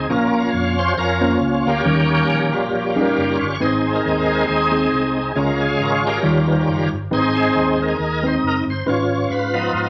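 A bright, shouting tonewheel organ opens this reverent, soulful uptempo gospel passage at 137 BPM with a light swing on the eighths, holding sustained chords up front through a slow rotary speaker and chorus vibrato, key click audible, over a dark, punchy fingered electric bass. From 0.1 s a worn, slightly out-of-tune tine electric piano adds lightly overdriven accompaniment as the harmony moves through Bbm, Eb7, Ab, Db and Eb9 before settling on Db7/Ab. The organ carries the solo throughout this short section of a longer piece, tuned to A4 = 444 Hz and set in a wet studio reverb.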